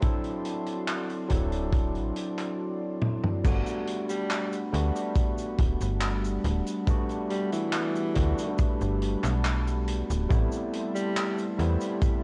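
A clear, close-miked tenor saxophone carries the pop-style melody from 4.1 seconds, its vibrato trailed by tape echo in this faded, dreamy vaporwave excerpt cut from a longer piece. Up front, an overdriven tine electric piano supplies bright, barky accompaniment through a combo amp, with subtle chorus and tape echo adding a gritty haze. A warbling, nostalgic pad of sawtooth and triangle tones sits in the background, its slow attack and long release giving mellow, lo-fi sustained chords soaked in chorus and reverb. A punchy, saturated kick drum sits up front alongside a loose indie kit of cabasa, handclaps, hi-hat, toms and dark crash cymbal, both rolled off on top and roughened by vintage 12-bit sampler grit, with gated reverb on the kit and a drum fill at 3.0 seconds. A snappy, digital FM bass with a metallic, slap-like attack enters at 1.3 seconds, while the harmony moves from D7 to a long Gmaj9 and then Am7, all wrapped in light reverb and cassette tape coloring.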